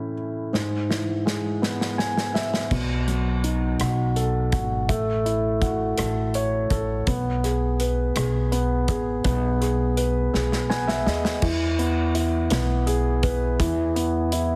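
In a straight 6/8 at 55 BPM, this dramatic, melancholic pop ballad excerpt opens on an up-front grand piano with long sustain, joined at 0.5 s by a loose acoustic drum kit in a pumping small room (crash, hi-hat, punchy kick, rim click and medium-tuned snare), with drum and piano fills leading into 2.7 s and again from 10.3 s, while a woody, thumpy pizzicato upright bass on gut strings enters at 2.7 s, the mix sitting in light reverb with a heavily compressed radio-like sound as the chords move from A and E/G# through B7, F#m7/A and G#m to E.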